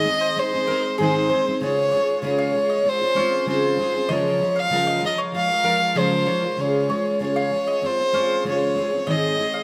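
A heartfelt, sunny acoustic pop passage opens with three parts at once: a bowed solo violin carrying the melody, a picked steel-string acoustic guitar in accompaniment, and a mandolin tracing arpeggios. The violin sits close and up front, its warm, expressive tone shaped by vibrato and portamento, with a touch of delay trailing its lines in the upper register. Beneath it, the double-tracked guitar has a full-bodied, jumbo-sized sound with audible finger squeak, moving through a gentle progression from Ab to Dbmaj7 and Bbm7/Db, back to Dbmaj7, and then settling on Ab. The mandolin stays in the background, its double strings giving the arpeggios a round shimmer. A lush hall reverb surrounds the group, though the mix keeps the rough character of a home demo, and the 9.6-second excerpt is cut from a longer piece.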